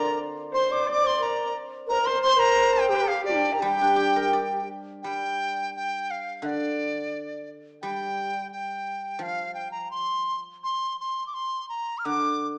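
A wistful, tender Chinese chamber piece in rubato time opens with the whole ensemble at once: an up-front bamboo dizi carries the melody with a pure, buzzing, tongued tone and vibrato, while an airy, close-miked low xiao, a husky bowed horsehead fiddle with portamento, and a shimmering hammered dulcimer play second lines over a silvery, fingerpicked guzheng. The xiao and fiddle stop at 4.7 seconds and the dulcimer at 7.0 seconds, leaving the dizi and guzheng to carry on in this passage cut from a longer piece. A wet recital-hall reverb surrounds the players, heard through a small-speaker sound.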